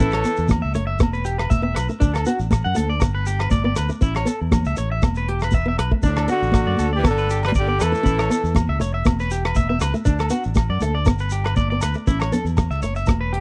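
Highlife guitar band music with a danceable, carefree mood, captured in a dry, close studio sound with a 1970s character. A cloth-damped drum kit gives a thuddy, tight kick with hi-hat and rim click, a punchy fingered electric bass sits up front, and a grainy shekere joins high-tuned congas and ringing agogo bells, the latter two set in the background. A fingerpicked acoustic guitar adds boxy swing-style accompaniment, while an electric guitar at the edge of break-up plays twangy arpeggios through tape echo. A clear trumpet and a raspy, gritty tenor saxophone, both with vibrato, sound briefly at the start and return around 6 seconds: the trumpet carries the melody up front and the saxophone plays a scooped second line behind it until 8.6 seconds. Cut from a longer piece, the passage cycles through a repeating A, E5, D and G progression.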